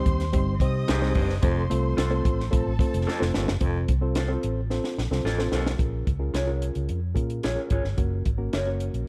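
Urgent and driving, this 110 BPM 1960s-style soul fragment in Bb minor rides a dry cocktail drum kit with a high-tuned snare, a punchy kick and fills, alongside a round, foam-muted fingered electric bass up front, while a reedy, worn, slightly out-of-tune electric piano accompanies throughout, a nasal bowed violin section with vibrato carries a second line until 3.6 seconds, a raspy, gritty baritone saxophone plays a riff from 0.9 to 5.7 seconds, and a slightly broken-up, compressed guitar through a small old amp adds stabs bathed in spring reverb and slapback echo, all within a dark production that keeps room reverb to a minimum.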